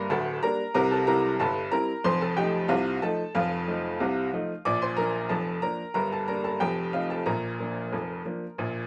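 A bright upright piano carries this cheerful, playful ragtime excerpt alone, its brilliant, woody tone sitting up front with an intimate closeness, audible action noise and long sustain. In Bb major at 92 BPM in a straight 2/4, it spans from D1 to D6, moving through Gm, C7 and F7 before settling on Bb at 4.7 seconds and again at 7.3 seconds. Light reverb gives the roughly nine-second passage a touch of room around the piano.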